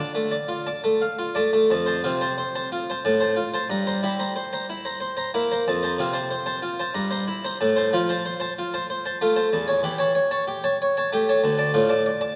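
In a flexible 3/4 at 92 BPM, pushed and pulled with rubato, this short excerpt of a baroque-style suite movement in F major unfolds with an introspective, grave mood, moving from D minor through F and C7 colours before settling back on D minor. A solo French-style harpsichord plays throughout, its plucked, brilliant tone and doubled octave strings sitting mid-forward and up front, spanning from D2 to Bb5. A long, wet church reverb surrounds the instrument, lending the stately phrases a spacious, resonant halo.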